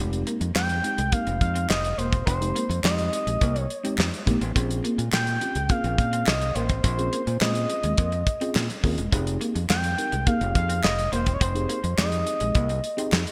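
A dark, smooth sawtooth synth lead with vibrato and chorus carries the melody up front from 0.6 seconds in this slick, late-night early-eighties boogie funk excerpt, over a fingered electric bass and a damped 70s drum kit with a fat snare, tight kick and gated reverb. A clean tine electric piano provides accompaniment and a twangy, slightly broken-up electric guitar riff with lush chorus sits in the background, while a very quiet, crisp group handclap adds texture. The harmony moves from Fm9 to Bbm9 and back, all in a bright 1980s-style digital production with light reverb.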